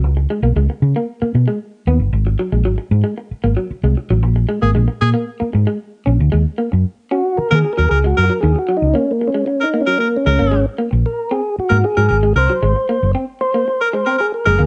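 Funk in Eb dorian at 114 BPM, a cool, funky cut from a longer piece. A round, punchy hollow-body bass sits up front from the start, with a slightly broken-up, lo-fi electric guitar riff entering just after and a breathy, whispered tenor saxophone adding an intimate second line with scooped notes from 4.6 seconds, during a band accent. At 7.1 seconds a lightly overdriven tonewheel organ takes the lead with a solo, its key click and slow rotary speaker clear over a dark, dry production that moves from Ebm7 to Ab9.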